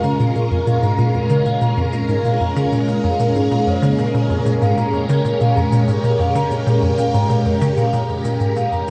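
Hypnotic and mysterious, this ambient space-music fragment is cut from a longer piece and settles on a single Bbm7 chord. A phased string machine sits up front with swirling, bright sawtooth chords that rise slowly and hold, colored by ensemble chorus, phaser and shimmer reverb. A vibraphone played with soft mallets, motor off, spins mellow, metallic arpeggios through a low-pass filter, analog delay and shimmer reverb, with a boxy small-room character. The loudest part is a hollow, bouncy square-wave pluck, detuned and chorused with analog delay, repeating a low riff with a fast attack, short decay and a moving notch. Electronic shaker and claves stay far in the background, fading in across the whole 8.9 seconds. The entire mix floats in a huge, long-tailed reverb and worn, warbling cassette tape drift before fading out from 7.5 seconds.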